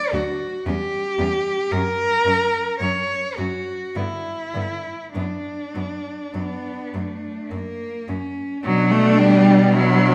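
Bathed in a wet recital-hall reverb, this brief, yearning and solemn classical passage for four bowed cellos moves in B minor at a rubato 49-57 BPM in 3/4, with an up-front, warm cello singing the melody between D4 and D5 with vibrato and portamento while three rich, vibrato-laden cellos support it (a soft-attacked, expressive second line, a distant accompaniment and a smooth, even, close bass) as the harmony passes from a rootless Bm/D through F# and G5 before arriving on Bm at 8.6 s.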